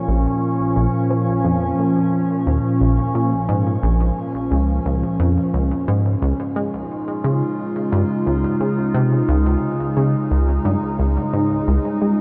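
A plucky analog bass drives this excerpt of ambient, sequencer-driven space music, its punchy, wave-folded riff snapping with a fast filter pluck and decaying tail through lush chorus and delay, spanning Bb1 to Ab3. Alongside it, an evolving wavetable pad holds detuned, morphing chords with a slow attack and long release, its mellow triangle tone colored by phaser and shimmer reverb as the harmony shifts from Bbm to Dbadd9 at 5.5 seconds. At 88 BPM in a straight 4/4, tuned to A4 = 436 Hz, the piece feels expansive and hypnotic, bathed in a huge ambient reverb with an 8.4-second decay.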